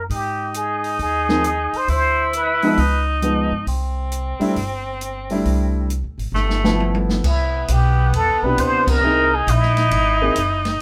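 A breathy, wah-wah plunger-muted trumpet and a woody pizzicato upright bass open this relaxed, playful small-group swing-and-bop excerpt at 134 BPM, joined at once by a clear, vintage-toned tenor saxophone with vibrato and an open drum kit with dark cymbals and a boomy kick, then by an intimate grand piano with audible action noise at 1.3 seconds, before a drum fill at 6.4 seconds ushers the trumpet back in over a light reverb and a band accent at 8.8 seconds.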